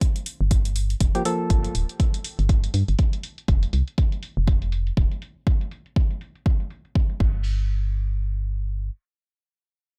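A deep, overdriven electronic kick opens this deep house cut, layered and up front with a large room around it, while a quieter, punchy analog drum machine adds crash cymbal and hi-hat from a small room, its hats, snare, percussion and cymbals muffled by low-pass filtering. At 0.4 seconds a hollow, organ-like FM bass enters, dark and close, its fast-attack notes decaying as it pumps with sidechain compression, with a filter sweep running over it until 5.5 seconds. A brief percussive organ stab built from sine and triangle tones with a noise layer flickers in early, thickened by chorus, cassette tape color and analog delay and ducking with the same sidechain pumping. The harmony rests on Gm7 before moving to F5, and the chords fall away as the bass carries on alone after the drums stop at 7.3 seconds. The swung sixteenth feel keeps the mood warm and smooth, all set in a dry, gritty hardware sound with a touch of digital ambience.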